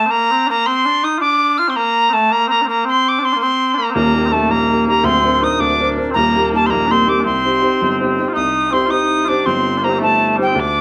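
A reedy wooden whistle carries the melody of this dark yet spirited Celtic jig, its soft attack, vibrato and rolled-off highs keeping it pure and up front, while mellow small bagpipes hold a sweet, continuous second line beneath it. At 4.0 s a clear upright piano joins with intimate, woody accompaniment, its action noise audible, moving through chords from Eb to Cm before the tune shifts into a new section at 8.4 s. A wet studio reverb sets the players further back in the room, giving this lively fragment of a longer piece a natural sense of space.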